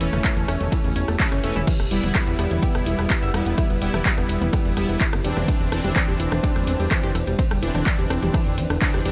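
Dark and dramatic, this melodic techno excerpt drives along at 126 BPM in E minor, moving from A/E to Em at 1.7 seconds over a punchy, overdriven electronic kick and an up-front techno kit of warm hats, handclaps, rim clicks, ride, crash and toms. A fat, nasal, detuned analog bass pumps against the kick, while bold, brassy synth stabs with ring modulation and dub echo cut through. Behind them sit tight, wave-folded arpeggios with phaser and a deep, moody pad that sustains slow-attack chords, all in light reverb.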